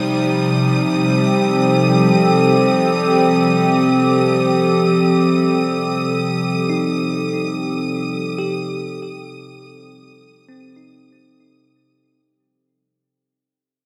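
Floating in free time, this spacious, melancholic ambient passage is cut from a longer piece, tuned to A4 = 438 Hz and resting on a single F7/C chord. Up front, a warbling, tape-like pad holds sustained chords with a dark, nostalgic lo-fi character, its slow attack and long release softened by chorus and its own reverb. Beneath it, a nasal, string-like drone sits in the background, tense and evolving with vibrato and a faint noise layer. High above, a rich studio violin section adds a focused, close ensemble texture with bowed vibrato. At 6.7 seconds a bell-like tine electric piano enters with clean, direct arpeggios trailed by delay. A wet scoring-stage reverb surrounds the parts, and a fade-out runs from 3.2 seconds to the end.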